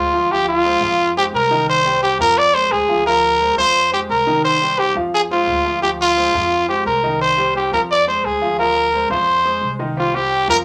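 Salsa at a brisk 174 BPM in 4/4, fiery and passionate, built on a repeating cycle of Dm7b5, Fm and Cm that settles on C5 at 10.0 seconds in this short cut from a longer piece. A raspy, growling trumpet with light vibrato carries the melody up front, punchy and gritty, while a clear, polished concert grand piano sits lower in the mix with deep bass and audible action noise. A woody, thumpy pizzicato upright bass plays quietly underneath, and all three parts share a short, wet club reverb.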